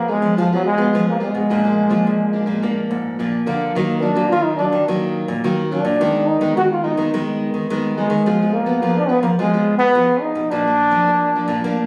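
A phone recording from inside a room with light studio reverb captures this nostalgic, bittersweet samba and choro fragment at 107 BPM, where a breathy, whispered trombone with light vibrato and scooped notes carries the melody up front over two fingerpicked nylon-string guitars, one giving accompaniment with finger squeak and a deep classical tone, the other full-bodied with fresh strings on the bass, moving through chords from Fdim and Bb to Ebmadd9 and Abm/Eb across 11.9 seconds.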